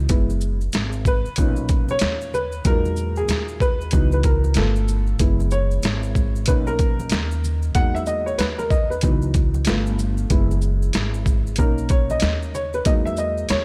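Smoky and nocturnal, this jazz-hop cut from a longer hip hop piece moves at 94 BPM with a swung sixteenth-note feel, its dark, slightly detuned upright piano up front and soloing from 0.1 seconds over a cycling progression of F#9sus4, Bmaj7, Emaj9#11, C#m11 and G9. Beneath it, a woody, growly pizzicato upright bass anchors the low end while a gritty, compressed, pitched-down boom bap sampler kit sits up front with a thumpy kick, medium-tuned snare, hi-hat and shaker, all tape-warm. Maracas and congas murmur in the background, and the whole piece sits in light, small-room reverb.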